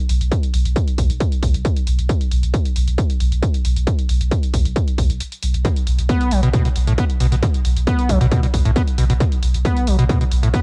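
Dark and industrial, this driving peak-time techno excerpt moves in a straight 4/4 pulse with a dry, close sound that carries the grit of a home cassette recording. A deep, round sine sub bass sits up front from the start, overdriven, low-pass filtered and pumping against the sidechain, while an overdriven electronic hi-hat joins at the same moment with its own pumping and a layer of tape grain. A heavy, layered kick drum lands just after, overdriven and pushed forward in the mix. After a brief break from 5.2 to 5.6 seconds, a squelchy, square-wave acid bass riff enters at 5.6 seconds, resonant and distorted, with a filter sweep, fast decaying notes and an analog delay trailing behind it. Together the parts build a relentless, abrasive groove that feels cut from a longer piece.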